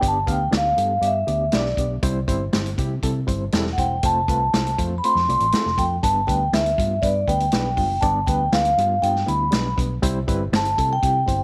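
A mellow, ringing vibraphone played with soft mallets carries the melody up front, its slow motor vibrato giving this joyful, uptempo 1960s-style soul cut a gentle shimmer. Beneath it, a reedy electric piano, lightly overdriven and pulsing with fast tremolo through its built-in speakers, supplies the accompaniment. A dark, round, foam-muted electric bass and a tight, natural-sounding vintage drum kit of kick, medium-tuned snare and hi-hat with a rolled-off top fill out the groove, all set in light reverb.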